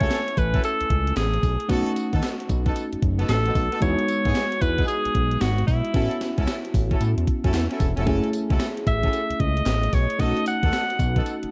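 A bright, forceful alto saxophone leads this punchy, confident new jack swing excerpt at 113 BPM in F# dorian, its scooped, lightly vibratoed melody sitting up front with a digital delay over a swung 16th-note groove and chords moving from F#m7 through B7, Emaj7 and A6. Beneath it, a tape-warm gated 80s digital drum machine thumps with a thumpy kick and gated reverb snare alongside hi-hat and tambourine, while a fat, detuned sawtooth analog bass rumbles low and a warbling FM electric piano fills in the harmony. A bright horn section adds delayed stabs, and a crisp, distant group handclap is barely audible in the dark production with light studio reverb.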